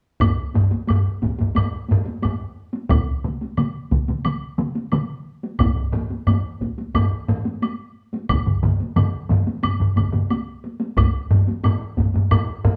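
Japanese traditional taiko drum ensemble music, powerful and ceremonial in a straight 4/4, cut from a longer piece, with several taiko groups struck with hard and heavy sticks, one compressed and saturated, one up front in a live room, one close and dry, one in a small room entering at 2.9 seconds and stopping at 10.3 seconds, alongside a woody small-room woodblock, all played live together in one room under a wet studio reverb.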